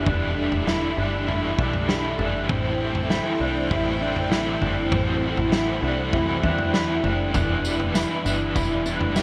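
An up-front, overdriven garage guitar with tremolo and subtle chorus carries the accompaniment in this haunting, hazy dream pop piece at 99 BPM in E minor, moving from Em7 to Am7 and back. Beneath it, a full-bodied string machine cello sound holds sustained chords through ensemble chorus, and a dark, clean electric guitar plays fingered, compressed arpeggios through chorus and digital delay. A punchy, funky analog bass adds plucky, fast-attack notes, while a muffled, lo-fi vintage drum kit of tight kick, snare, tambourine and toms enters at 0.1 s, the whole mix sitting in a lush hall reverb with bright 1980s-style digital production.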